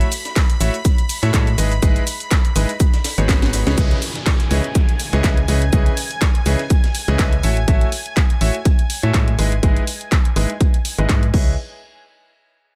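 A punchy, overdriven electronic kick sits up front in this bittersweet, energetic piano house cut. A brilliant concert grand riff with tape echo and a low-pass filter pumps alongside a hollow, organ-like FM bass and silky, detuned analog string chords. A house kit with a cracking snare, handclaps, shaker and crash is layered with a gritty, very quiet breakbeat sampler kit that drops out at 7.6 seconds. A background downlifter runs from 3.8 to 7.7 seconds, following an opening drop that closes with a drum fill.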